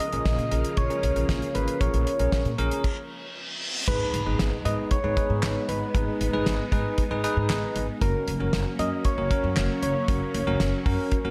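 Synth-pop at 116 BPM in 4/4 with a straight feel, this excerpt from a longer piece sits in G# dorian and carries a nocturnal, melancholic mood in a dreamy mix soaked in lush hall reverb. A soft, round, FM-style synth lead with a keys-like fast attack, decaying notes, vibrato, chorus and a diffuse ambient delay carries the melody between A#4 and D#5, while a bell-like tine electric piano with subtle chorus adds clean, direct accompaniment. Beneath them, a silky vintage string machine built from pulse and sawtooth waves holds sustained chords with a slow attack, long release, moving notch and ensemble chorus. A damped 70s drum kit sits up front with a fat snare, tight kick, dark cymbals, hi-hat, crash and handclaps, joined from 0.1 seconds by a woody, thumpy pizzicato upright bass on gut strings. A stop arrives at 2.8 seconds, filled by an electronic reverse cymbal that leads into an impact at 3.9 seconds as the harmony moves from A#m7 to G#m, then settles on F# at 8.0 seconds.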